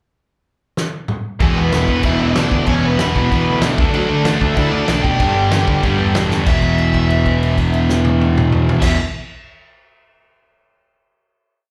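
Rowdy and rebellious, this short punk rock piece charges along at 189 BPM in a straight 4/4, opening with a pickup bar where a loose, roomy drum kit with a fat snare, punchy kick and dark cymbals fills in at 0.8 seconds. At 1.4 seconds the band crashes in on a chorus moving through E5, D5 and G5, with a sludgy guitar and two bright, distorted guitars driving eighth-note power chords and ringing chords in the background, a growly fuzz bass pounding eighth notes underneath, and a crunchy overdriven lead guitar with slapback echo playing a motif-based melody partly doubled in octaves. After another drum fill, everything lands on a held E5 final chord at 6.5 seconds, all heard as a live gig through the venue's PA with a club reverb.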